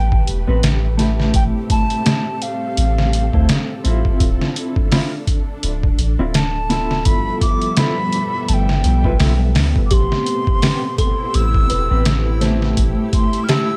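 Trip hop at 84 BPM in A minor, this cinematic, dark passage is cut from a longer piece and moves with a swung 16th-note feel over a digital ambience. A sampler-style drum kit, compressed, pitched down and gritty with a thumpy kick and medium-tuned snare, sits up front beside a deep, round 808-style bass, while a barely audible sub drop marks the start. An airy wooden flute carries the melody with vibrato and tongued notes, close-miked and coloured by vintage 12-bit sampler grit and tape echo, while a string machine in the cello register lays sustained, sawtooth chords with slow attack and ensemble chorus beneath it. A clean, fingered electric guitar adds dark accompaniment through tremolo, sharing the flute's grit and tape echo. At 9.9 s a delicate, tinkling music box joins with arpeggios through digital delay, and from 11.1 s a reversed, detuned, granular texture swells dreamily in the background with its own reverb over chords moving from A7sus2 through Dm7 and G13 to Am9.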